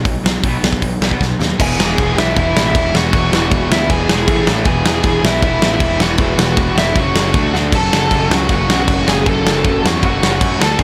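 Punk rock at 157 BPM in a straight 4/4, aggressive and raw, cut from a longer piece. It opens with two very quiet picked guitars on the riff, one bright and garage-raw, the other sludgy and overdriven, over a punchy fuzz bass and an up-front acoustic drum kit with a big-room sound, tight kick and rolled-off top. A drum fill from 1.2 to 1.6 seconds leads into the main section, where a dark, bluesy distorted lead guitar takes the melody and a double-tracked overdriven rhythm guitar joins the riff. The chords move from B5 to E, A5 and back to E, then pass through F#5 and D5 to F#m, with another drum fill at 7.5 seconds. The drums sit up front and the lead rides above the rhythm guitars, which stay low beneath them, all under light reverb.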